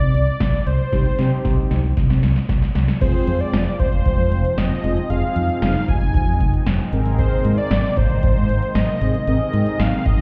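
Heard muffled as if through a wall and washed in light stone-room reverb, this nocturnal, driving synth-pop excerpt in F dorian at 115 BPM sets a thick, wave-folded unison lead with delay and vibrato over a dark, round fretless bass and an up-front analog drum machine with deep kick, punchy snare and metallic hats that plays a fill from 0.9 to 3.0 seconds, while mellow, ring-modulated synth brass with chorus adds accompaniment and a swirling, bright phased pad with slow-attack sustained chords enters at 3.0 seconds as the harmony moves from Cm to Fm and then Abadd9.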